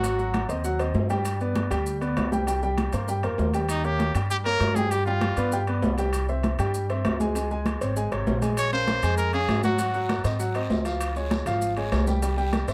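A small room with a moderate, short reverb frames this fiery, passionate salsa fragment, cut from a longer piece and moving briskly at 197 BPM in a straight 4/4. Up front, a brilliant grand piano carries the accompaniment throughout, polished and intimate with long sustain and audible action noise, while a dark, woody upright bass with steel strings plays pizzicato beneath it. A present, pop-style solo trumpet with vibrato states the melody in short bursts, first heard at the very start and returning at 3.7 and 8.6 seconds. The percussion bed blends ringing, high-tuned congas played with soft hands in the background, grainy, mellow maracas, and metal-shell timbales that sound distant, as if in a larger space. A raspy guiro joins quietly in the background for the closing stretch, adding texture to a harmony that moves through chords such as Ab7, Eb7, Bbm7 and Db.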